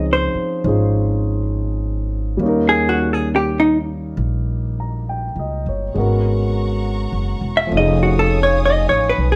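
A vintage hollow-body electric jazz guitar carries the melody through this short, wistful and smoky jazz ballad fragment, its clean, picked tone dark and compressed and placed up front. The tempo is a slow 68 BPM in 4/4 with a swung eighth-note feel, and the harmony moves from C#maj9 to D#7, then G#m11 and F7alt. A grand piano accompanies close by, intimate and natural, with a long sustain and audible action noise. Beneath them an upright bass plays pizzicato on steel strings, woody and thumpy in the low register, also up front. At 5.9 seconds a studio string section enters softly with lush, bowed sustained chords, smooth and even with gentle vibrato and a warm ensemble sound. Light reverb surrounds the group, and the excerpt ends at 9.4 seconds.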